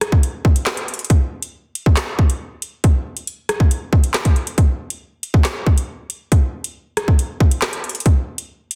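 The rhythm is a half-time hip hop groove in 4/4, carried entirely by a drill drum kit that runs from the start to 8.8 seconds in this short excerpt cut from a longer piece. The mood is menacing and cold, with the electronic, produced kit sitting up front in the mix. Its hard-clipped kick, woody snare and metallic hi-hats are joined by handclaps and rim clicks. The kit carries a tape-warm character and the feel of having been re-recorded in a large room. The overall sound is dry with little reverb, and the master is dense and heavily limited in a modern style.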